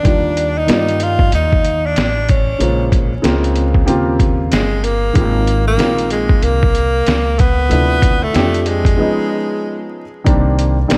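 Jazz-hop with a smoky, mellow mood, this short clip from a longer piece rides a loose swing over jazzy extended chords. A breathy, close-miked tenor saxophone carries the melody up front with light vibrato and a punchy, jazz-style attack, its line trailing tape echo until it drops out at 9.9 seconds. A dark baby grand piano sits close and intimate beside it, its short sustain and audible action noise giving the chords a natural, felt texture. Underneath, a woody pizzicato upright bass anchors the low end. The trip hop drum kit is the loudest part, a compressed, pitched-down, muffled sampler-style kit with a thumpy kick, medium-tuned snare and hi-hat, pushed forward and roughened by overdrive. Light reverb, small-room ambience and a prominent layer of vinyl crackle wrap the mix, and a break arrives at 9.0 seconds.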